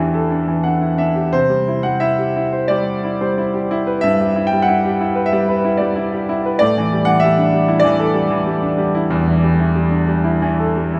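A clear, up-front grand piano opens with a brief fill from 0.3 to 1.3 seconds, then settles into a relaxed, hopeful passage of lyrical solo classical playing in a rubato 4/4, its smooth, vintage tone and long sustain moving from A7sus4 to Cmaj7 and back to A7sus4 at 6.6 seconds across a range of E2 to G5, all set in the wet reverb of a recital hall in what sounds like a church or concert hall, in an excerpt cut from a longer piece.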